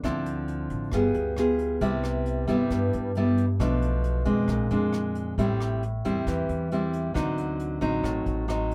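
A moderate booth ambience frames this short bossa nova fragment at 135 BPM in 4/4, romantic and breezy in mood, with a fingerpicked, full-bodied nylon-string guitar up front playing rich jazz chords such as Dm9, G7b9 and Cmaj7. A woody pizzicato upright bass supports it from below, while a brushed jazz drum kit with a punchy kick, hi-hat and rim click sits in the background, all three parts playing throughout the 8.7 seconds.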